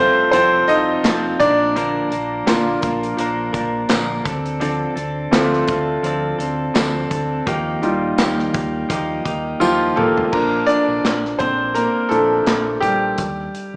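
This hopeful, uplifting slice of piano-driven pop opens at once with a bright, brilliant concert grand carrying the solo lead up front, joined by a clean, picked electric guitar riff and a deep, round fingered bass beneath. The piano's vintage tone pairs sparkle with deep bass, while the direct-recorded guitar sounds compressed and up front. At 84 BPM in 4/4 with a light sixteenth-note swing, a modern acoustic drum kit settles in with a tight kick, medium-tuned snare, hi-hat, handclaps, toms and crash, its dark, rolled-off top keeping it smooth. A jingly tambourine sits in the background, and the harmony moves from F through Bb, Dm7 and Ebadd9. A drum fill at 9.6 seconds leads into a new section at 10.3 seconds, where the guitar drops out and the piano solo carries on over Bb and Eb, all set in a moderate recital-hall reverb with a small-speaker character.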